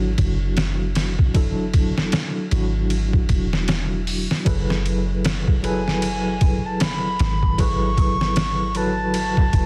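Trip hop at 77 BPM in F# minor with a swung, cinematic and hypnotic feel, this short excerpt opens on a worn, slightly out-of-tune tine electric piano with overdrive and tremolo and a deep, round 808-style bass, joined at 0.2 seconds by a gritty, pitched-down sampler-style drum kit with a thumpy kick, soft-clipped snare and small room ambience, before an airy wooden flute enters with dub echo at 5.6 seconds over a dense master flecked with vinyl crackle, as the harmony shifts from Dsus2/F# to F#m11.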